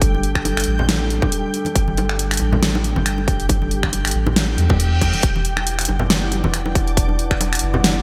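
An up-front deep house drum kit with a fat, tape-toned snare, finger snaps and hi-hat under gated reverb drives this brooding, meditative deep dubstep excerpt at 138 BPM in a swung half-time feel. It is joined by a punchy overdriven electronic kick, a round, soft sub bass, a dark, detuned analog pad with chorus, a dreamy, reversed granular texture that glows bright, ringing bongos and congas with dub echo in the background, and a reverse cymbal from 4.6 to 5.2 seconds, all in a bright 1980s-style digital sound with light ambience.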